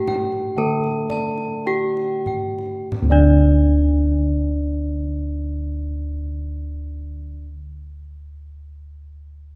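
A fragment of a slow, ceremonial Javanese gamelan piece opens with every bronze layer sounding at once: a bright, ringing metallophone melody played with a horn mallet sits up front, over a lower metallophone accompaniment struck with a wooden mallet. High arpeggios shimmer above them, carried by round, beating bossed gongs and a close-miked, dry, full metallophone. Beneath, a line of bossed gongs supplies the bass from a background position. The deep, distant kendang drum is heard only from 0.1 to 3.5 seconds. The tempo is unhurried, between 45 and 62 BPM in a straight 4/4, and it slows through the opening 2.9 seconds before the music moves into a new section. A moderate stage reverb lends the serene texture a spacious halo, and lossy compression artefacts are audible.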